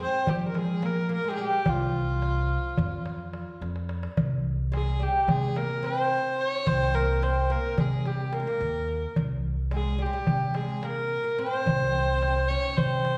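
A clear, biting kamancheh carries the melody in this hypnotic, melancholic excerpt from a Turkish makam ensemble, sounding from the first moment together with the other parts, with light vibrato, portamento and an airy, earthy bow tone, placed up front. Beneath it an oud plays a second line with plectrum-plucked double strings, its fretless voice woody and deep, while a growly pizzicato upright bass with steel strings anchors the low end, also set up front. A small, high darbuka with a clay shell and natural skin is struck with hard hands, keeping a 9/8 metre at 216 eighths per minute with a straight feel. The music begins in makam nihavent on F, and a drum fill from 3.6 to 4.2 seconds leads into a shift to makam kurdi on C at 4.2 seconds. The whole ensemble sounds heard from further back in a wet recital hall, its reverb lending the playing a lingering, distant glow.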